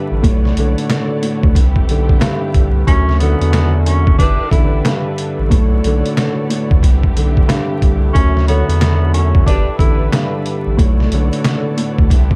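A dark, woody upright piano and a rich, distant string section open this short, nostalgic boom-bap hip-hop excerpt at 91 BPM, the piano filtered and softened with a cassette-tape character while the bowed strings hold lush, sustained chords above it. A thick, saturated sub bass and a gritty, pitched-down sampler-style drum kit arrive almost at once, the drums sitting up front with a thumpy kick, medium-tuned snare and hi-hat, all swung on the 16ths for a loose, soulful head-nod. At 2.9 seconds a breathy tenor saxophone takes the melody, whispered and intimate with subtone, vibrato and scooped notes, touched by filtering and a digital delay. Just after, a mellow saxophone section adds background stabs, also filtered and delayed, before both horns drop out near the 10-second mark. The harmony cycles through Bm9, Am11, Dmaj9 and G6, and the dark production, light reverb and vinyl crackle give the whole piece a dusty, nostalgic feel.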